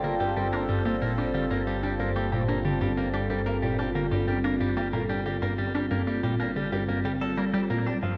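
A squelchy, resonant blip pluck carries a riff between G2 and D4 through phaser and delay, and it stands out as the most prominent voice in this mysterious, hypnotic passage of sequencer-driven ambient space music. Set at 92 BPM in a straight 4/4 in G minor, the brief excerpt, cut from a longer piece, rests on a single Gmadd9 chord. A detuned, wave-folded pad holds sustained chords with chorus and phaser, while a twangy, clean twelve-string electric guitar picks arpeggios from F3 to A4, softened by a low-pass filter and echoed by delay. Underneath, an analog drone warbles on a low G1 with chorus, its pulse-width modulation lending a vintage, evolving character. A moderate plate reverb with a 3.1-second decay gives the mix a spacious sense of depth across its roughly 8 seconds.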